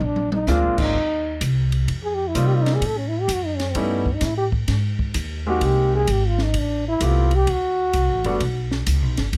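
Playful and relaxed, this short cut from a longer small-group swing and bop piece moves at 129 BPM in 4/4 with a swung feel, opening on a drum fill as a breathy, dark trombone takes an intimate, whispered solo with light vibrato and a soft attack, up front over a woody, thumpy pizzicato upright bass on gut strings. An open acoustic drum kit with dark cymbals, a high-tuned snare and a boomy kick sits further back, while a concert grand piano with deep bass and natural tone accompanies from 0.5 seconds, as the chords move from Bb9 and Eb69 to Abmaj7 before landing on Gmaj7 at 8.4 seconds. Close, detailed microphones and little reverb keep the sound dry and immediate.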